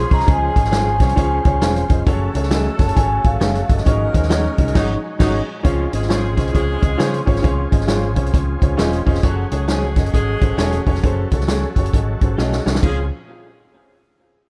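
This dark, close-sounding production carries little room ambience and a faint smear of lossy compression. Over it runs an uplifting, uptempo 1960s-style soul groove at 134 BPM in Db major, swung in 4/4. A vibraphone played with soft mallets carries the ringing, metallic melody through tape echo with a fast motor vibrato, stepping aside at 5.2 seconds in the middle of a band accent. A clear, jazz-style saxophone section adds a soft-attacked second line. A woody upright piano supplies mellow accompaniment, while a gritty, overdriven tonewheel organ holds thick sustained chords with chorus vibrato and key click in the background. A round, foam-muted electric bass and a punchy, up-front big-band drum kit drive the swing, and a twangy, slightly broken-up guitar enters at 0.7 seconds with lo-fi stabs through tape echo, before a drum fill at 12.4 seconds returns the chords to Dbmaj7.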